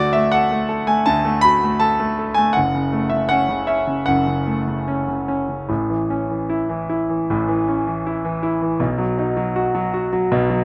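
A bright concert grand piano carries this short, lyrical classical passage alone, its brilliant, polished tone sitting up front with deep bass and a short sustain. The mood is tender and peaceful, with a flexible rubato feel as the harmony moves from D through F#m and A to B. A moderate studio ambience surrounds the piano, and a brief fill at 10.3 seconds closes this fragment of a longer piece.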